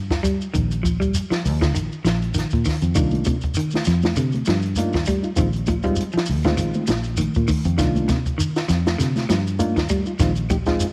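This intense, funky afrobeat excerpt opens at 0.0 seconds with a dark, round fingered electric bass, foam-muted and sitting up front, joined almost at once by a compact cocktail drum kit, a shekere and a clean electric guitar. The groove moves at 100 BPM in 4/4 with a light 16th-note swing, in C minor and tuned to A4 = 435 Hz. The dry, natural kit pairs a punchy kick with a high-tuned snare and hi-hat. Beside it, the grainy, mellow shekere sits close, and the picked guitar plays warm arpeggios. At 3.0 seconds a reedy electric piano enters with fast tremolo, and congas with a thick-skinned, soft-handed sound settle in the background just after. The harmony moves from an opening Bbsus4 through Cm11 and Bb7sus4 under a light studio reverb.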